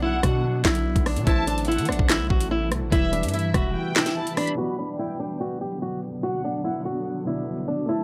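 A half-time drill groove at 145 BPM in B phrygian sets a menacing, tense mood. The electronic kit is up front, with a knocking kick, sharp snare, metallic hats, handclaps and rim clicks, and the kick drops out between 3.8 and 4.6 seconds. A heavy, distorted 808-style bass stops at 3.8 seconds. Over this, an up-front fingerpicked flamenco guitar carries the melody through a delay. A lush bowed violin section with vibrato adds a second line. Glassy, wave-folded digital keys with chorus supply the accompaniment and take on a filter sweep from 4.6 seconds. A blurred, detuned granular cloud pad holds mellow chords in the background. The whole sits in a dry, gritty hardware mix over Bm, Am and Em.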